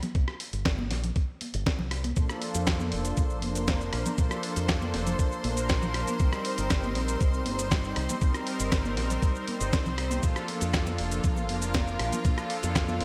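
This nu-disco clip, cut from a longer piece, opens on a gritty, sampler-style soul drum kit with a fat, up-front snare, rim clicks, hi-hat and cabasa, alongside congas set back in the mix, and is joined a moment later by a thumpy, compressed electronic kick. A fingered electric bass with an envelope filter comes in at 0.2 seconds, playing a low, warm line over a C5 power chord in C dorian at a straight 119 BPM in 4/4. At 2.2 seconds a detuned sawtooth analog pad and a lush symphonic string section arrive together. The pad has a soft attack and a bright, smooth shimmer from chorus, tremolo and delay. The bowed strings carry even, close chords with vibrato, and both parts pump with sidechain as the harmony moves through Bbmaj7, Cm7 and back to Bbmaj7. A moderate hall reverb and bright 1980s-style digital production give the sleek, sensual groove a polished sheen.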